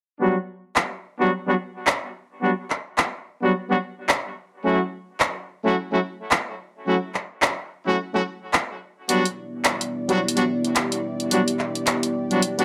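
A swung 108 BPM glitch hop groove in 4/4 drives this gritty, playful excerpt, with a layered electronic drum kit of handclaps and bright hats entering at 0.8 s alongside tight, brilliant horn stabs that carry light vibrato, octave doubling, dub echo and a filter sweep over chords moving from Gmaj7 through A6 to Em7, until a deep, detuned sawtooth analog pad with chorus and a slow attack joins at 9.4 s in a moderate studio reverb.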